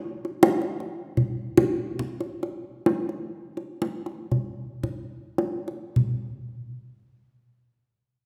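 In a straight 4/4 that slows over the first 6 seconds, this serene, shimmering gamelan fragment, cut from a longer piece, features a tight, dry acoustic kendang heard close and up front from 0.2 to 6.5 seconds within the reverberant air of a recital hall, as the music shifts into a new section at 6.0 seconds.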